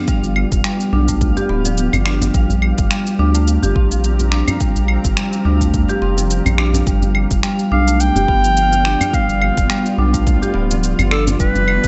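A relaxed 106 BPM groove in 4/4 with a gentle 16th-note swing drives this peaceful, earthy organic downtempo excerpt in G mixolydian, built from a deep electronic kick, a produced layer of shaker, claves and finger snaps, and a very quiet djembe played with soft hands that enters at 0.5 seconds. Underneath, a round, dark analog bass sits up front with a fast attack and sidechain pumping, while a marimba played with medium hard mallets runs smooth arpeggios colored by vintage 12-bit sampler grit, a low-pass filter and delay. A cloudy, detuned granular pad holds sustained chords moving from G7 to Bb69 and back, its blurred, full-bodied tone carrying built-in reverb and its own sidechain pumping. Far in the background, a twinkling granular texture adds an octave-up FM shimmer. At 7.7 seconds a clear clarinet takes the melody in a classical style, up front with delay, and a faint electronic riser appears at 11.7 seconds just before the cut. 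The mix is lightly reverberant, with nothing above 8.0 kHz.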